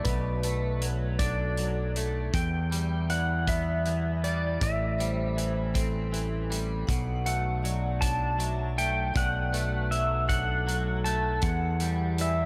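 Soaked in lush hall reverb, this dreamy, brooding post-rock excerpt drifts at a slow 53 BPM in 6/8, with a clean, delay-laced lap steel guitar singing a slide melody in volume swells over bright, twangy picked arpeggios from a chorused electric guitar and ringing, metallic vibraphone arpeggios set in the background, while a loose indie drum kit of punchy kick and hi-hat and a growling, overdriven fingered bass sit up front beneath melancholic chords moving from Bm7 to Emadd9.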